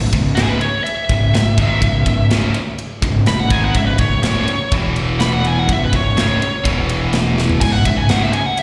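A straight 4/4 pulse at 124 BPM drives this aggressive, heavy metal excerpt in C# minor, with a tight, up-front drum kit of polished, bright cymbals, medium-tuned snare and tight kick under a double-tracked, high-gain rhythm guitar riff joined by a growly, fuzz-drenched picked bass. Above them a bright lead guitar solo, distorted with slapback echo and digital delay, runs from 0.4 s as the harmony moves from C#m to alternating E5 and C#5 power chords. A drum fill lands at 7.4 s, and the whole band sounds like a live gig heard through the venue's PA, with a light hall reverb.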